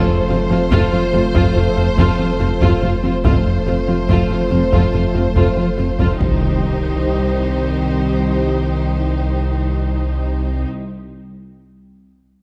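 A straight 4/4 pulse at 71 BPM drives this brooding, relentless hybrid orchestral and electronic film score, with distant taiko drums struck with hard sticks entering very quietly at 0.7 s in a large room. Over an F chord, a lush, focused violin section holds the melody on C5 with vibrato, while a very quiet, woody second violin line sits beneath it and a rich, close viola section adds expressive portamento. Dark cellos in the background and a smooth, even double bass section anchor the low end alongside a clean sine sub bass. A round analog bass riff with ring modulation and a bright, detuned analog pluck playing arpeggios both run until 6.1 s. A shimmering, retro, mellow pulse-width pad with chorus and a warm, classical-style French horn section with light vibrato sustain chords behind them. At 6.2 s the harmony moves to C minor and a huge impact lands in the background, the whole excerpt set in a moderate scoring stage reverb.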